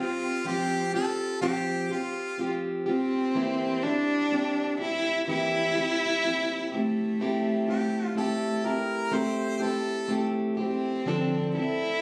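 A slow folk excerpt at 62 BPM in a straight 4/4, tuned to A4 = 439 Hz, opens with cello, harmonica and a picked plugged-in steel-string acoustic guitar all sounding together, creating an intimate, haunting mood. The single bowed cello carries the melody between A3 and E4, played sul tasto with an airy bow, soft attack and light vibrato, sitting close and up front. Above it, a bright harmonica with light vibrato adds a classical-style second line from F4 to C5 until it drops out at 10.4 seconds. The parlour-toned guitar, warm and up front, picks the accompaniment through Fsus2, C7/E, Am7 and Dm7. The recording was captured on a phone in the room, with a light studio reverb.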